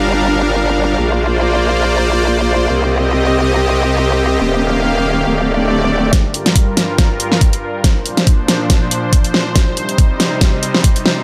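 Aggressive and chaotic, this heavy wobble dubstep cut from a longer piece runs at 140 BPM in 4/4 with a half-time feel and a 55% swing on the sixteenths, set in G minor. A lush, detuned sawtooth supersaw pad holds sustained chords throughout, pumping under sidechain and shaped by a low-pass filter, moving through Gm7, Bbadd9, Cm, Ebadd9 and Dsus4. For the first 6.1 seconds a growling, saturated growl bass wobbles underneath with a formant-filtered bite, chorus and overdrive, sitting up front in the low register. At 6.1 seconds the bass stops and a build-up begins: a dubstep drum kit brings a huge snare and bright hats, both high-pass filtered, alongside a knocking, tape-warm electronic kick that drops out at 10.9 seconds. Across this closing stretch a drum fill runs and a filter sweep moves over the supersaw, all within a light reverb.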